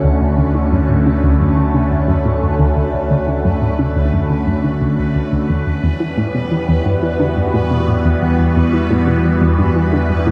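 A swirling, airy phased pad sits up front in this expansive, mysterious excerpt of ambient, sequencer-driven space music at 88 BPM in E dorian, holding sustained Dmaj7 and Emadd9 chords through phaser, chorus and shimmer reverb. Beneath it, a round, nasal analog pluck riff with a fast attack and short decay is treated with chorus and delay and carries a filter sweep, while a deep sine sub bass holds the low end. A bubbling, resonant stepped-filter texture fades in through its own shimmer reverb, and the whole piece sits in a huge ambient space, with the chord change arriving at 5.5 seconds.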